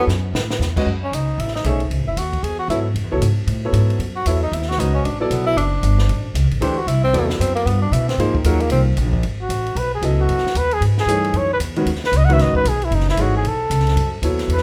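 A breathy tenor saxophone solo, soft-attacked with vibrato and scooped notes, opens this intense, spiritual modal jazz excerpt at a brisk swinging 229 BPM over a smooth vintage grand piano, a woody, thumpy gut-string upright bass up front and a dry cocktail drum kit with dark cymbals, a high-tuned snare and a punchy kick that begins with a short fill, until a mellow trumpet enters at 9.4 s to take the solo as the music settles into C# minor under light reverb.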